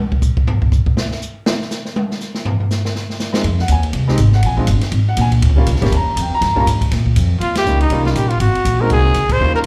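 A close-miked trumpet carries the melody in this relaxed, sophisticated small-group swing and bop cut from a longer piece, arriving at 7.4 s with a warm, vibrato-rich jazz tone touched by plate reverb and slapback echo. Before it, the acoustic drum kit opens with a solo until 3.4 s, its dark cymbals, medium-tuned snare and boomy kick sounding natural and up front in a small room. A clear, woody piano joins just before the solo ends, at 3.3 s, and upright bass follows at 3.4 s: the plucked bass is thumpy and prominent with steel strings, while the open piano comps with long sustain and its own plate reverb and slapback echo. The harmony moves through chords such as Fm7, Bb7, Eb7 and Ab7 under a swung eighth-note feel, and the full band hits two accents during the trumpet's entry passage. The whole performance is heard as a live club gig through the venue's PA, with a light room reverb around it.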